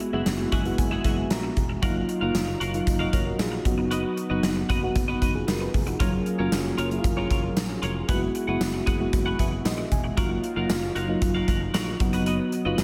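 Glossy and nostalgic, this 1980s-style pop excerpt moves at 115 BPM in a straight 4/4, cut from a longer piece and carried on a big arena sound with a lush hall reverb. A gated 80s drum kit sits up front with a punchy kick, a medium-tuned snare, hi-hat and tambourine, its airy, polished room clipped short by the gate. A mellow FM electric piano supplies round, dark accompaniment with chorus and tremolo, adding short fills at 0.3 and 9.1 seconds, while a brassy analog pad holds sustained, detuned sawtooth chords in the background. A twelve-string electric guitar picks a bright, twangy riff drenched in lush chorus and tape echo, and a growly fretless bass hums beneath with ensemble chorus. A very quiet, jingly tambourine joins at 6.5 seconds as the chords circle over an F# bass, moving from Eadd9/F# through D#madd9/F# and B/F# to F#maj7 and back.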